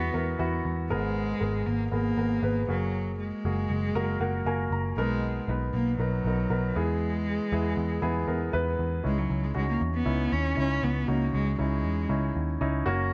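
Bittersweet and dramatic, this piano-driven pop passage moves in a steady, straight four, and it is cut from a longer piece. A solo bowed cello carries the melody up front, its boxy, expressive tone colored by vibrato and portamento, until it drops out at 12.3 seconds. Beneath it, a polished, present baby grand piano spreads its accompaniment across a broad register and adds a short fill from 4.0 seconds. A vintage, foam-muted picked electric bass sits up front as well, dark, round and amped, anchoring the low end. The harmony moves to a C-sharp minor add9 chord when a new section begins at 9.0 seconds, and the parts share a moderate large-studio reverb with a touch of small-room ambience.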